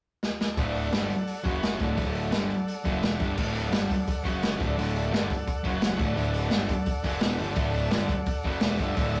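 A rough rehearsal-room recording with tube saturation and a wet small-room ambience carries this swaggering, rowdy garage rock excerpt, where a crunchy, gritty breakbeat drum kit with dark cymbals kicks off with a fill at 0.2 s, a thick, bright, double-tracked fuzz guitar riff and a round, overdriven picked bass charge in at 0.6 s, and a buzzy vintage combo organ sustains chords with heavy vibrato in the background.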